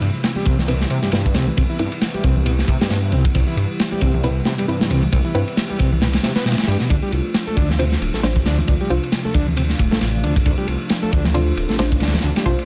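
Swaggering and energetic, this breakbeat cut moves at 135 BPM in 4/4 with a swung sixteenth-note feel, taken from a longer piece and holding on Cmaj7 before shifting to Dm7 at 6.9 seconds. A crunchy breakbeat kit sits up front with a tight kick, a medium-tuned snare and dark ride cymbal, its saturated, gritty tone rolled off at the top, while bright, close congas played with hard hands tick along in the background. Beneath them, a deep, rumbling detuned saw bass growls with a beating unison edge. A mellow combo organ riff with light vibrato enters at 0.4 seconds, roughened by tube saturation and vintage 12-bit sampler grit, and a muted, filtered dub chord stab with a plucky attack, chorus and dub echo follows at 0.7 seconds under a filter sweep that runs through the whole passage. A swirling, evolving analog pad with a slow attack and long release fills the background, treated with phaser, chorus and sidechain pumping, and the whole track sits in a small room ambience.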